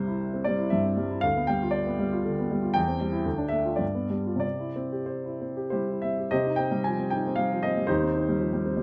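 This romantic classical character piece for solo piano, in C major and 3/4 time, carries a passionate yet hopeful mood across a short passage cut from a longer work. The tempo moves freely between 93 and 123 BPM with a rubato feel, and the grand piano is tuned slightly high, to A4 = 441 Hz. The instrument has a warm, smooth, vintage tone and sits up front, spanning from C2 to Ab5 and captured by close, detailed microphones with light reverb. The harmony begins on C, passes through G7/D, C/E, Dm and G7, and settles back on C at 4.4 seconds. At 6.3 seconds the music turns to a new section in C minor, shading the brighter opening before it moves to Cm/Eb.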